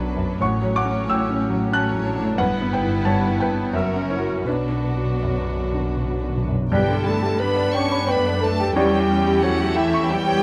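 A clear, up-front concert grand piano carries the melody with a worn, deep-bassed tone alongside expressive chamber violins in this brooding, passionate classical excerpt in 3/4 at a rubato 76-93 BPM, over lush second violins, smooth violas, a portamento-tinged cello section and dark bowed double basses, with round soft-mallet timpani entering at 4.5 s and, from 6.7 s, a punchy oboe, hollow flutes, a close-miked clarinet, a mellow bassoon, distant roomy French horns, a barely audible trombone section and a very quiet trumpet joining, all set in moderate scoring-stage reverb.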